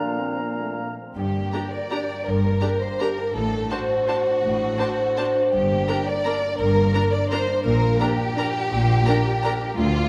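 A rubato 3/4 pulse moving at 151-184 BPM drives this festive, sweeping orchestral ballroom waltz in G minor, cut from a longer piece. It opens on a brief woodwind and brass moment: an airy flute with vibrato, a warm oboe and a clear, soft clarinet carry second lines, a distant bassoon gives accompaniment, and a tight French horn section holds sustained chords. A bright, ringing concert harp plays fingerpicked arpeggios throughout. At 1.2 s the strings take over, with a rich, expressive violin section up front on a second line, an intense cello section and a lush double bass section on the bass. From 1.5 s a smooth violin section sings the high melody with vibrato while a far-off viola section fills the accompaniment, over a progression that moves from Gm through D7/A and back to G minor. The whole is set in a wet scoring-stage reverb.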